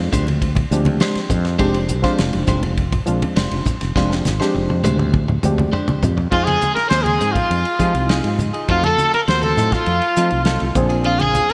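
A bright, 1980s-style digital sheen and a lush hall reverb frame this intense, nocturnal slice of electric jazz fusion in F dorian, moving at 102 BPM in a straight 4/4. From the opening, a barky, reedy electric piano with analog chorus sits in the background over a growly fretless bass that stands up front, while a clean electric guitar bathed in lush chorus adds picked stabs. A damped 70s kit with a fat snare, tight kick and dark cymbals, treated with gated reverb, keeps time alongside low-tuned congas played with soft hands behind the band, and a drum fill runs from 4.0 to 6.3 seconds. At 6.3 seconds a trumpet enters up front with vibrato, scooped notes and a smooth top, carrying a jazz-style solo melody, as a double-tracked, overdriven guitar plays a second line. The harmony moves from Fm69 to Fm7, then through F7b9 to Bb9 before the cut.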